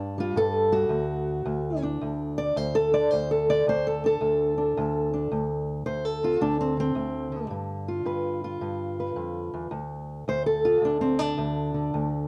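A lone fingerpicked steel-string acoustic guitar opens this short fragment of acoustic country blues, its boxy, parlour-sized tone sitting up front with audible finger squeak. The mood is rollicking and gritty, moving at 109 BPM in 4/4 with a swung eighth-note feel. The guitar spans from D2 up to D5, starting on a G5 chord before moving into a chordless stretch. At 5.3 seconds a new passage begins, cycling through D5, G7 and back to D5. A moderate studio reverb and a dark, warm production give the instrument a snug sense of room.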